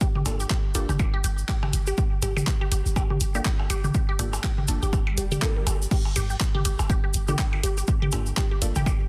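A dry, dense and heavily limited mix carries this cool, quirky minimal techno fragment, with a punchy, tape-warm electronic kick drum and a deep sine sub bass with a pitch-drop attack both up front, the bass pumping against the kick under a swung sixteenth-note feel. A squelchy, resonant blip pluck riff, run through phaser, cassette tape and tape echo, sits over muted, detuned dub chord stabs on a single Gm7 colored by phaser, subtle chorus and delay. An overdriven garage kit with crash cymbal, handclaps and hi-hat joins grainy cabasa and delayed electronic toms and percussion blips, while a faint electronic swell appears in the background at 5.1 seconds.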